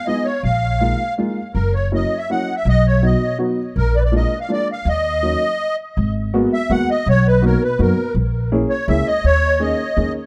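A boxy small room with a moderate reverb frames this short cut from a longer musette waltz, its whirling, nostalgic mood carried in a straight 3/4 lilt. Up front, the musette accordion sings the melody with a reedy, shimmering musette tuning and a touch of tape echo. Beneath it, a dark upright piano supplies the accompaniment, mellow and worn, slightly detuned, with short sustain and audible action noise that lends an intimate, woody character. The upright bass is played pizzicato on steel strings, thumpy and acoustic, anchoring the lower register. A brief stop at 5.6 seconds clears the air before the music shifts into a new key at 6.0 seconds, moving through richer chords such as G#m9 and Bmaj7 before settling on D#7sus4.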